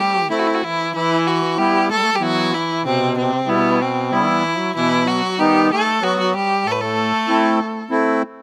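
Bittersweet yet festive, this klezmer excerpt in 3/4 at 95 BPM sets a clear, vibrato-rich bowed violin up front on the melody, with a buzzy, thin metal-muted trombone carrying a second line through a slapback echo and a reedy accordion with slow beating entering at 0.3 seconds to accompany over chords moving from Am through Em and B back to Am, all heard dry and close as if played outdoors.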